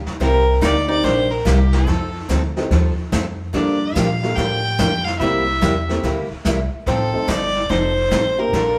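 A band playing live in one room, washed in wet studio reverb, carries this playful, swinging country western swing excerpt, where a clear, nasal fiddle with light vibrato leads up front over a woody, thumpy pizzicato upright bass, a vintage brush kit with a punchy kick, a bright dreadnought acoustic guitar, a dark hollow-body archtop guitar tucked in the background and, from 0.9 seconds, a mellow, slightly detuned upright piano with audible action noise.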